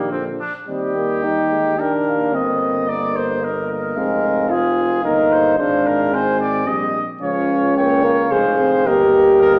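Solemn and grave, this classical brass quintet fragment in Eb major moves in a rubato 3/4 at 109 BPM, its harmony passing from Eb through Fm to Db and Gm. A mellow, close-miked cornet carries the melody above a clear, distant trumpet on the second line, while a warm, distant French horn fills out the accompaniment, a dark trombone with light vibrato sits in the background, and a roomy tuba with gentle vibrato anchors the bass. The five voices sound together from the start for about 9.6 seconds, bathed in a recital hall's reverb yet heard with a small-speaker quality.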